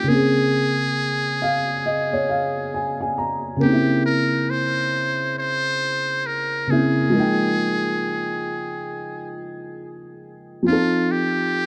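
Nostalgic and hazy, this short hip hop passage moves at a slow 68 BPM in 4/4 with a swung sixteenth-note feel, set in F minor. A trumpet with a metal mute carries the jazz-style solo melody from start to finish, its buzzy, thin tone touched with light vibrato, breathy air and scooped notes, and given depth by plate reverb and analog delay. Beneath it, a felt-muted upright piano supplies the accompaniment with a boxy, intimate, thick-felt sound, also dressed in plate reverb, and slips in a fill between 1.0 and 3.6 seconds. The harmony drifts from Bbm9 through C7b9 and Fm11 to F7. Both parts sit up front in a small room with a dark production, and the clip is cut from a longer piece.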